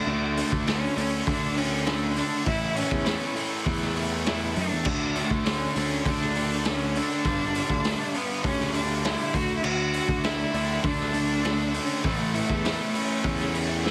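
Quiet-loud alternative rock with a restless, bittersweet mood, this short excerpt sets a distant, biting bowed cello melody with light vibrato and a slapback echo over an up-front, double-tracked overdriven electric guitar riff, moving through D5, A, G5 and D. A fuzzy, picked electric bass carries the low end, and a raw garage drum kit enters at 0.4 seconds, gritty and saturated in a small room with a punchy kick, a medium-tuned snare, hi-hat and crash under a rolled-off top. Light reverb and a heavily compressed, radio-like sound frame the whole performance.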